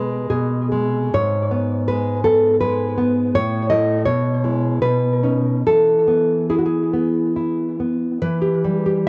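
A dark, full-bodied nylon-string guitar sits up front in this tender, sunny romantic piece for solo classical guitar, fingerpicked in E major in 3/4 with a rubato feel at around 67-83 BPM. The harmony moves from a rootless E through G#madd11, A, E/B and Badd9 back to E, then turns to E minor at 8.2 seconds before the fragment closes at 9.1 seconds. Cassette tape colour and tape echo give the guitar a homemade character, set in a moderate spring reverb and small room ambience.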